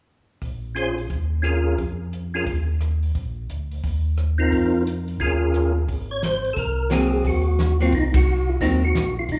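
Swinging and greasy, this soul jazz organ trio snippet sets a mellow tonewheel organ bass line, turning through a slow rotary speaker, under an up-front drum kit with a fat snare and dark cymbals, all bathed in a reverberant hall. A percussive organ lead with third-harmonic click and fast rotary carries the melody from 0.7 seconds. A clean, hollow-body archtop guitar adds brief accompaniment from 6.9 seconds, and the band hits an accent at 8.1 seconds.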